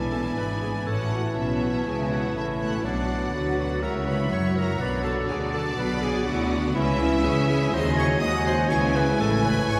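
A quick, spirited classical-period movement for symphony orchestra in A major at 123 BPM, played with a lively rubato feel. The lush, vibrato-rich first violins carry the melody, while a clear second violin section, a clear oboe, a mellow clarinet entering at 0.1 seconds, and an airy, distant flute ensemble add second lines. The accompaniment comes from a mellow bassoon, a very quiet, smooth viola section, and tight, mellow French horns holding sustained chords over cellos and an up-front double bass section, with the whole orchestra bathed in a long, wet church reverb in this short excerpt.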